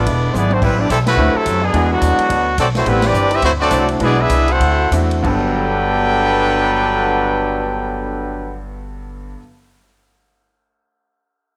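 The bright, tight trumpet section leads the melody up front with a light vibrato, while a bright trombone section with a soft attack carries a second line beneath it, both playing until about 8.6 seconds. This is an energetic, swinging big band jazz fragment cut from a longer piece, and its chords move through E7, Am9, D9 and D7 before settling on Gmaj9. A very quiet saxophone section holds a warm chord only for the opening moment, and a woody, thumpy pizzicato upright bass plays underneath, up front, through to the end. The acoustic drum kit, with its boomy kick and medium-tuned snare, opens with a fill at 0.3 seconds and plays until 5.3 seconds. The band hits accents at 1.0 and 3.0 seconds, and the music slows between 2.9 and 5.2 seconds. A brilliant upright piano with audible action noise and long sustain comps in the background from 1.2 seconds, and a moderate echo chamber reverb gives the band a roomy glow.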